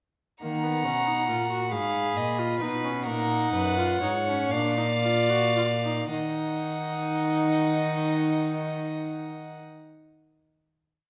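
A classical, baroque-style fugue for string quartet in E-flat minor, this short, complete piece is solemn yet driving, moving in 6/8 at a slow 35-47 BPM, counted in dotted quarters, and slowing down from 0.4 to 7.8 seconds. Two violins, viola and cello each carry one line of imitative counterpoint, played by single players with bowed, gut-string tone in period style. The first violin sings the melody high above a second violin line, both rich and reedy, with a close presence. The viola fills the middle with an airy bow and a nasal edge, while the cello anchors the bass with light vibrato, sitting up front in the mix despite its more distant placement. After an exposition moving through E-flat minor, A-flat minor and B-flat, the music settles at 6.1 seconds onto a final E-flat minor chord that rings in a resonant recital hall.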